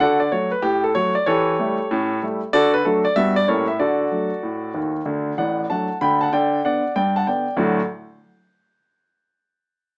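Playful and exuberant, this stride piano passage, cut from a longer piece, swings briskly at 190 BPM in 4/4 in D major. A concert grand plays alone from 0.0 to 7.8 s, spanning A1 to B5, with a deep bass, long sustain and an intimate, up-front presence in which the action noise is clearly audible. The harmony opens on D and moves through A7 and Gmaj7 to a pointed A7b9 before settling back home. A new section begins at 5.1 s, where the chords shift to G over D before returning to D. The polished piano sound sits in a moderate club reverb, and the whole recording has a small-speaker character.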